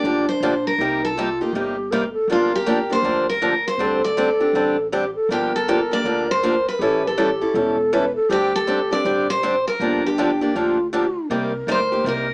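Fiery and virtuosic, this short cut from a longer jazz manouche piece swings at 160 BPM in 4/4, set in G minor. A picked steel-string acoustic guitar carries the melody, its bright, up-front tone sitting beside a breathy, hollow concert flute that plays a second line with a soft attack and straight tone. A second picked steel-string guitar, boxy and parlour-sized, supplies the accompaniment, while a pizzicato upright bass on gut strings adds a woody, thumpy foundation from much lower in the mix. The harmony moves through Gm11, Cm7, D7sus4 and A7 before the opening section gives way to a new one at 11.3 seconds on a return to Cm7. A modest small-room reverb and a small-speaker character give the whole thing an intimate, close feel.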